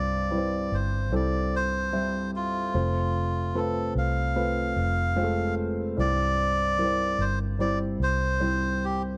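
This is a tender, heartfelt pop ballad in C major at 74 BPM, a short passage cut from a longer piece with a straight 4/4 feel. A reedy, breathy melodica carries the melody up front, its nasal voice moving between F4 and F5. Beneath it, a dark baby grand piano with a mellow, worn character and long sustain plays the accompaniment, sitting close in the mix. A vintage electric bass, foam-muted and round with a punchy, amped tone, holds the low end between F1 and C2. The harmony moves simply from C to F at 2.7 seconds and back to C at 6.0 seconds, all captured in a dry, close 1970s-style studio sound.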